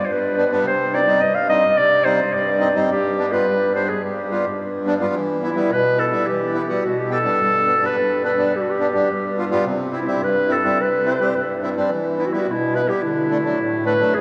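A smooth-topped clarinet opens at 0.0 s, playing the melody in a classical style, with the accordion joining a moment later at 0.1 s. This bittersweet yet festive klezmer tune moves at a steady 107 BPM in a straight 4/4. The opening passage moves through G and C minor before settling into E minor at 5.2 s, where the harmony shifts among E minor, G7, C and D. The warm clarinet sits up front as a solo voice, while the reedy, full accordion, also up front, supplies close-miked, dry accompaniment. The room is a vast, echoing space with a long cathedral reverb, and the music runs to 14.2 s, cut from a longer piece.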